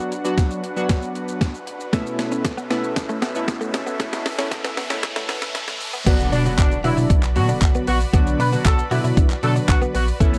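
Gritty, sampler-style drums sit up front in this driving, energetic dance-pop excerpt in B minor at 116 BPM, with a thumpy kick, high-tuned snare, handclaps, hi-hat, shaker and crash cymbal, all compressed and pitched down. Glossy, chorused retro synth keys and a smooth, detuned supersaw in the background hold the harmony from the start, both pumping against the sidechain, while an electronic riser and impact hover behind the mix. A clean, direct-recorded electric guitar with a scooped tone and analog chorus enters at 1.9 seconds with a picked riff as the chords move from Bm to Aadd9/B through a build-up with a drum fill and filter sweep. The drop lands at 6.1 seconds, bringing in a deep, mellow sub bass with octave and, just after, a punchy, vintage horn section playing a tight melody. The whole recording has a dry, gritty hardware character with light reverb and a high-pass filter.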